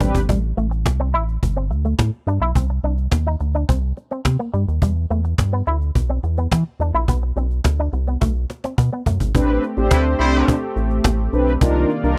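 A rubbery, bouncy square bass anchors this funky, late-night early-eighties boogie funk cut in A minor at 106 BPM, joined by a snappy, close cajon while a bright, twangy envelope-filtered electric guitar riff with analog chorus runs until 9.2 seconds, after which mellow detuned synth brass and a smooth analog pad with chorus, both heard only briefly at the very start, return at 9.3 seconds over chords moving from Am11 to Cm11, a distant, roomy horn section adds a brief second line at 9.9 seconds, and the whole is a dry, close small-room recording cut from a longer piece.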